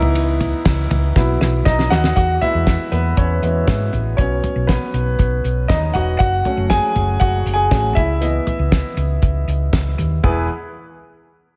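A polished, present grand piano leads this hopeful, uplifting piano-driven pop excerpt at 119 BPM in E major, its long sustain colored by a slapback echo as it takes the solo spotlight from the start through 10.2 seconds. Beneath it sit a round, punchy hollow-body electric bass and a dry, dark 70s drum kit with a fat snare, tight kick and rolled-off top, the drums adding a fill from 1.2 to 2.2 seconds as the harmony moves from C#m7 through Bsus4 to E, Bsus2 and F#m. A lush hall reverb gives the mix a big arena sound.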